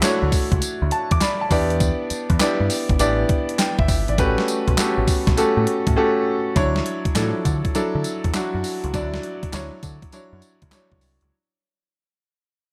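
A crisp 8-bit drum machine sits up front with a thumpy kick, medium-tuned snare, handclaps, hi-hat and tambourine, its overdriven, sampler-style hits re-recorded in a large room, driving this confident, punchy new jack swing cut at 101 BPM with a 16th-note swing. A vintage-toned concert grand piano with deep lows and short sustain carries the smooth accompaniment through Dmaj9, Em7 and A13 chords, adding a fill at 0.6 seconds, while a dark, round dub bass played with a pick anchors the low end. After a brief silent gap at 6.0 seconds, the groove returns on Dmaj9 at 6.6 seconds and fades out under light reverb in this excerpt.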